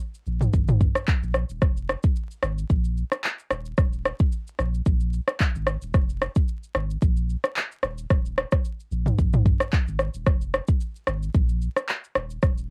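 A dry, homespun cassette recording with vinyl crackle carries this sunny, breezy afrobeats excerpt at 111 BPM in 4/4, with a gentle sixteenth-note swing. A layered, electronic deep house kit sits up front from the start, its deep kick joined by handclaps, rim click, shaker and toms, all with a tape-worn grit. From 0.3 seconds a round, mellow sine sub bass with transformer saturation holds sustained low notes between Eb1 and Bb1.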